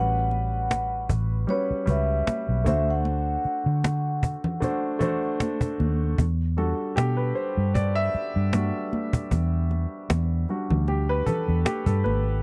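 Lush 1970s-style soul with a silky, cinematic mood, where a mellow vibraphone with soft mallets and slow motor vibrato carries the melody until 5.4 seconds over polished grand piano, a dark, round, foam-muted electric bass, a snappy cajon and ringing high-tuned congas in the background, before the piano takes a solo from 6.2 seconds in this dry, close studio sound.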